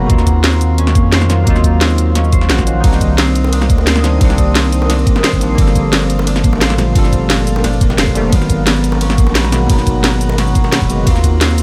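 A saturated sub bass, deep, thick and sine-like with a fast attack, holds down a melancholic, rolling stretch of liquid drum and bass at 175 BPM in C dorian, cut from a longer piece. A bell-like tine electric piano plays bright, clean accompaniment through analog chorus and tape echo, while a ringing, fingerpicked Celtic harp spins arpeggios through its own tape echo. Behind them, a glassy FM pad holds ethereal, mellow sustained chords with slow attack and long release, treated with ensemble chorus, built-in reverb and sidechain pumping. The layered, produced drum kit brings a cracking snare, bright hats, ride and cabasa alongside a knocking electronic kick, both re-recorded in a small room, with very quiet, high-tuned bongos struck by hard hands sounding distant from 3.4 to 10.7 seconds. The chords move through Ebm9, Cm9, Gm9 and Abm9 before settling on Ebmadd9, in a dry, close mix.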